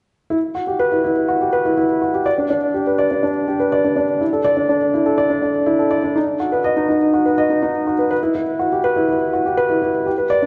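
Electronica with a cinematic, intimate mood, this short cut from a longer piece rests entirely on a solo baby grand piano in a straight 4/4 feel. The piano is dark and mellow, placed up front, and carries a delay that trails its notes. It stays in a middle register, from D4 to D#5, and plays alone from 0.3 to 10.5 seconds. A wet concert hall reverb with a long 2.4-second decay surrounds the sound, lending a spacious, lingering atmosphere. The tuning sits slightly low, at A4 = 435 Hz, giving the instrument a subtly unfamiliar pitch.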